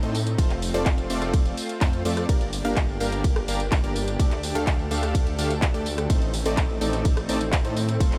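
Anthemic and emotional, this short cut from a festival progressive house track moves at 126 BPM in a straight 4/4. A lush, detuned unison pad with a slow attack and chorus holds sustained chords in the background, while a punchy supersaw stab with a filter pluck plays a riff trailed by tape echo. Beneath them, a thick, menacing detuned saw bass with a saturated, beating edge anchors the low end, and the pad, stab and bass all pump against the sidechain. A house kit of handclaps, bright hats, ride cymbal, rim click and tambourine runs throughout in a small room ambience, and an up-front electronic kick, the loudest part, enters at 0.4 seconds. The harmony moves through F, Gm, Dsus4 and Adim, with the whole passage sitting in a digital ambience.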